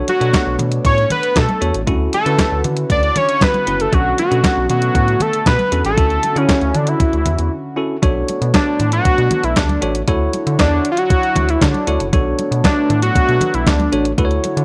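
This slick, funky slice of early-eighties boogie funk opens on a bell-like tine electric piano, a smooth, dark analog pad with chorus sitting in the background, and a rubbery, hollow square-wave bass with a bouncy filter pluck. Almost at once a clean 12-bit drum machine arrives up front with a thumpy kick, snare, handclaps and hi-hat, while very quiet congas add a damped, thick-skinned acoustic tone. A fat, detuned analog lead carries the melody with vibrato and slapback echo, riding above the groove until 14.1 seconds. The harmony moves back and forth between Bm7 and Dmaj9, and a short break at 7.5 seconds leads into a second section that runs to the end of the excerpt at 14.6 seconds. Light reverb gives the mix a polished sheen.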